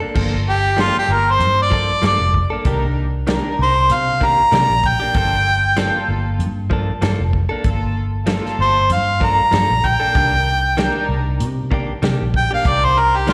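A straight-eighth soul blues groove with a light sixteenth-note swing carries this brooding, soulful fragment, as a foam-muted, round and punchy bass and a dry, dark soul drum kit of kick, snare, hi-hat and crash settle in at 0.2 seconds beneath Gm9 and Cm9 chords. A clean, compressed electric guitar plays stabs with slapback echo from the very start, while a studio string section with a reedy, gut-string period tone holds bowed chords. The up-front harmonica takes the melody from 0.5 seconds as a solo, its clear, close-miked sound carrying light vibrato, scooped notes, overdrive and slapback echo, all heard through a live venue's PA with recital hall reverb.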